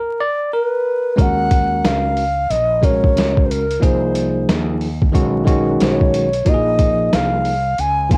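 Home cassette sound with vinyl crackle and light reverb gives this short, mellow jazz-hop cut from a longer hip hop piece a smoky, lo-fi haze. It moves at 91 BPM in 4/4 with a lazy swing on the sixteenths, in Eb dorian. A bell-like tine electric piano opens the piece at 0.0 seconds, clean and up front, and at 0.5 seconds a breathy bass bansuri joins it on the melody, bamboo-toned and reedy, with vibrato, a crisp attack and lifted highs. At 1.2 seconds a boom bap sampler-style drum kit arrives, pitched down, compressed and gritty, with a thumpy kick, a medium-tuned snare and hi-hat, re-recorded in a large room yet kept up front. A round, punchy fretless electric bass enters at the same time, sitting low in the mix with tube saturation. The harmony drifts through Ebm7, Ab69/C, Badd9 and Bbm9, keeping the mood relaxed and hazy.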